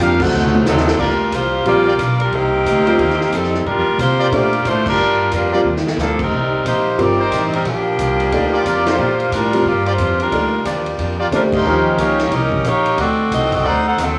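Sultry and dramatic, this big band swing excerpt opens with a bright trumpet section melody over a mellow trombone section second line and very quiet, clear sustained saxophone chords, before an edgy, close-miked saxophone section takes the melody up front from 0.7 s. Warm, soft-attack trumpet section stabs with vibrato, an intimate concert grand piano with audible action noise entering at 1.7 s, a boxy picked archtop guitar with finger squeak, a woody pizzicato upright bass with tube saturation, and a swinging drum kit with a boomy kick, band accents and short drum fills fill out the band. Cassette tape grit colors the trombones, stabs, piano and drums, and the whole take sits in light reverb with the ambience of a small room.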